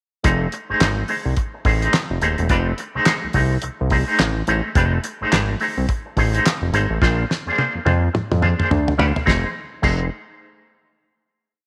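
A heavy on-the-one funk beat at 106 BPM, swung on the sixteenths, drives this short, playful, funky piece: a damped 70s drum kit with a dry, fat snare and tight kick; a thick, detuned, saturated sawtooth analog bass playing a syncopated riff anchored on the downbeat, with muted ghost notes, chromatic approach notes and a filter sweep; and a clean, picked electric guitar through an envelope filter and tremolo scratching out a sixteenth-note rhythm over F7#9, moving to Bb9 at 7.0 seconds as a drum fill leads to a closing F7#9 chord at 9.3 seconds, all set up front in a light, small-room reverb.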